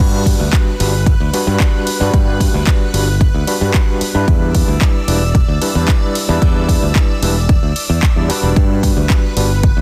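A straight 4/4 groove at 112 BPM drives this short nu-disco cut, which sits in G major and moves between Gmaj7 and Em7 with a groovy, feel-good mood. An overdriven, up-front electronic kick enters at 0.3 seconds with a punchy thump, layered with a house kit of bright hats, ride, crash and handclaps, both treated with overdrive and studio reverb. A growly, bright fingered electric bass carries the low end from the start, direct and forward with tube saturation. An overdriven tine electric piano plays accompaniment through a combo amp, its barky, gritty tone shaded by medium tremolo and analog delay. Above it, a lush string machine holds slow-attack sawtooth chords with a sub octave, ensemble chorus and sidechain pumping, giving a vintage sheen to this dense, heavily limited mix.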